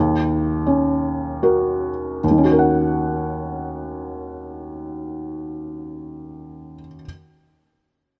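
A felt-muted upright piano opens on an Eb minor seventh chord, its soft, mellow tone sitting up front and intimate in light reverb as the tempo slows over the first 2.2 seconds. This brief classical excerpt in Eb minor moves in a rubato 3/4 around 75 BPM, with the piano's accompaniment spanning Eb2 to Gb5. A new section begins at 2.2 seconds, carrying its longing, melancholic mood through to the close at 7.1 seconds.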